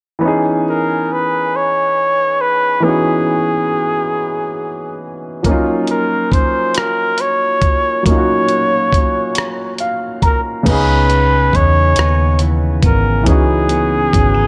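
Slow R&B in six-eight at 46 BPM, this short excerpt in C# dorian feels yearning and sultry under a light reverb. A warm, up-front grand piano opens the accompaniment at 0.2 seconds, moving from C#m9 to D#m9, and a clear, punchy flugelhorn carries the solo melody with vibrato and scooped, pop-style notes. At 5.4 seconds a dusty sampler-style soul kit arrives with a gritty, compressed, tape-toned sound, a thumpy kick, hi-hat, rim click and crash, re-recorded in a large room yet placed up front. The piano plays a fill just before the music returns to C#m9 at 10.7 seconds. There a foam-muted fingered bass with a dark, round, amped punch enters alongside a clean, compressed electric guitar playing a second line beneath the horn.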